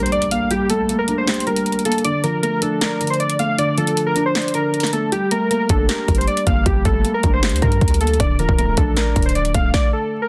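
An electronic impact opens this melancholic, hard-hitting half-time trap fragment, alongside warbling, detuned lo-fi synth keys carrying a nostalgic melody with chorus and a soft, dark, felt-muted upright piano whose audible action noise sits intimately up front. Punchy, layered drums with metallic hats, handclaps and snare drive the break. After a brief kick drop at 5.1 seconds, a deep, boomy 808-style bass joins at 5.7 seconds, all inside a dense, heavily limited mix with light reverb.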